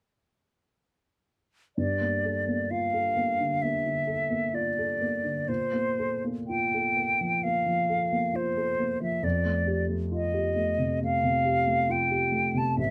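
Classical impressionist duo in G dorian, hazy and mysterious, drifting at 58-70 BPM in a rubato 4/4 with tuning set to A4 = 437 Hz, cut from a longer piece. From 1.8 s a silver concert flute carries the melody, airy and metallic with vibrato and a soft attack, while a dark baby grand piano accompanies with a mellow, intimate, vintage tone and audible action noise, both placed up front in a light reverb. The harmony moves from Gm9 to Bbsus2 at 5.5 s and settles on F9 at 9.2 s.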